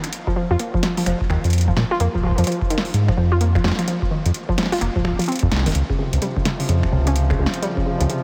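An electro analog drum machine opens at 0.0 s with finger snaps, metallic hi-hats and a punchy snare under tape echo, quickly joined by a deep electronic kick, a warbling, dusty lo-fi pluck spinning intricate arpeggios through chorus and analog delay, and a round, dark analog bass sitting up front. This eerie IDM moves at 128 BPM in 4/4 with a swung 16th-note feel, and the harmony settles onto Db near 5.8 s. At 6.0 s a nostalgic, detuned tape-like pad enters with a slow attack and 12-bit sampler grit, while a huge ambient reverb soaks the whole dreamy mix.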